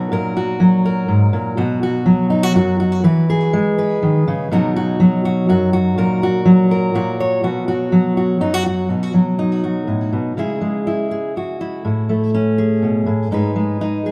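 A large studio room with a moderate reverb surrounds a full-bodied, up-front dreadnought steel-string acoustic guitar, fingerpicked with a touch of digital delay in a live-in-the-room performance. This nostalgic, anthemic folk passage moves in 3/4 at 123 BPM. It rests in B major, moving through chords such as F#add9, E and F#/A#, then turns toward B mixolydian at 8.9 s, with C#m, Amaj7 and G#m colouring the second section before the piece is cut short at 14.1 s.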